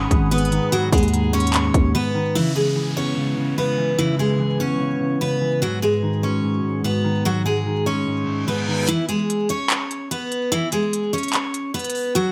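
Hip hop with a trap edge at 147 BPM in a half-time feel, this eerie, hard-hitting C# minor excerpt is led by a bright, full-bodied picked steel-string acoustic guitar melody up front. A mellow, clean, compressed electric guitar plays over G#m7 and C#m7 harmony alongside a deep, moody analog pad with chorus that sits in the background. A growling, buzzy 808-style bass and a trap kit with a hard-clipped kick and crisp hats hit together only until a break at 1.9 seconds, after which an electronic downlifter and reverse cymbal carry the middle stretch to 8.9 seconds, where the drums return with handclaps and hi-hat but the kick muted, all under light reverb.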